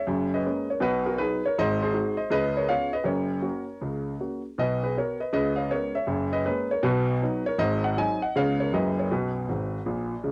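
A dark grand piano opens the recording and carries it alone for its full 10.3 seconds, playing stride jazz with a swinging, playful lilt in a brisk four. The tone is mellow and worn, with the piano's action noise audible and the instrument placed up front for an intimate feel. Cassette tape coloring on the piano and a short, moderate booth ambience give it the character of a home recording. The harmony cycles through turnaround-style changes such as F#add9, B, G#7 and C#7, spanning from the low bass register up into the upper middle of the keyboard. A brief piano fill arrives at 9.5 seconds, just before this snippet of a longer piece cuts off.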